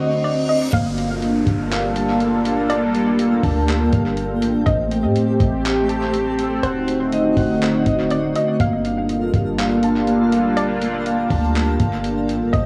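This hazy, spacious cloud-rap excerpt in G minor opens on an up-front, sawtooth-and-sine pad holding sustained chords with a sub octave, chorus and sidechain pumping. Alongside it come bright, ringing fingerpicked Celtic harp arpeggios through tape echo, a twinkling FM granular texture with octave-up shimmer set in the background, and an electronic reverse cymbal and downlifter that runs until 4.7 seconds. A hollow, warbling square-wave pluck carries the mellow, detuned melody from 0.2 seconds, its vintage tone coloured by chorus and tape echo. At 0.7 seconds a deep, boomy 808-style sine bass and a muffled, pitched-down lo-fi sampler kit of thumpy kick, hi-hat and handclaps settle into a half-time feel at 122 BPM, the drums also touched with tape echo. The harmony moves through D7b9, Gm9, Am7b5 and back to D7b9 and Gm9. Light reverb and digital ambience give the echo-heavy mix its hazy, spacious atmosphere.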